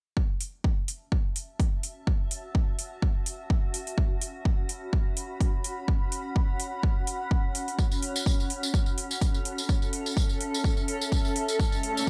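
A punchy, tape-warmed electronic kick opens this gritty, aggressive bass house excerpt at 126 BPM in F# minor, joined almost at once by up-front metallic hi-hats with a light 16th-note swing, both sitting in a dry studio ambience. A bright, blurred granular cloud pad fades in from 1.9 s, sustaining over an F#m7 harmony with a slow attack, built-in reverb and sidechain pumping. A jingly, close acoustic tambourine enters at 7.8 s, and a faint electronic riser rises out of the background at 11.7 s as the excerpt cuts off.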